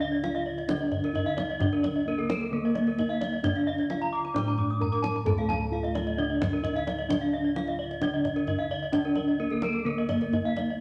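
Brilliant and shimmering, this short cut from a longer Balinese gamelan piece moves in a straight, steady four, with every part sounding together from the opening moments through about 10.8 seconds. A bronze metallophone carries the melody in a mellow, soft voice from padded disc mallets, with a boxy, small-room colour. Beneath it, another metallophone plays the accompaniment, while two more spin arpeggios in a higher register. Those three are struck with horn mallets for a bright ring; two sound full and close-miked, while the third is airier. Because each metallophone is tuned in pairs, their notes carry shimmering beats. Bossed gongs anchor the bass with a round, airy bronze tone, and a kendang adds deep, dry, close drumming, all set in a large reverberant studio space.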